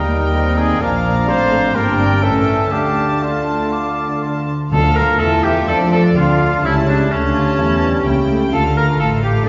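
Stormy and restless, this quick classical-period orchestral passage in D minor moves at 126 BPM in 4/4 with a rubato feel. Floating violins carry the melody while a very quiet second violin line, a pure flute, a mellow clarinet and a distant, roomy oboe weave countermelodies. Background violas and a bassoon fill the accompaniment, and mellow French horns hold sustained chords over a dark cello section and soft-attack double basses. A clear, up-front trumpet punches stabs until 4.5 s and the bassoon drops out at 4.4 s, after which the timpani sounds a D from 4.7 to 5.4 s. The sound is wet and reverberant, like a church or concert hall, with a dull top end.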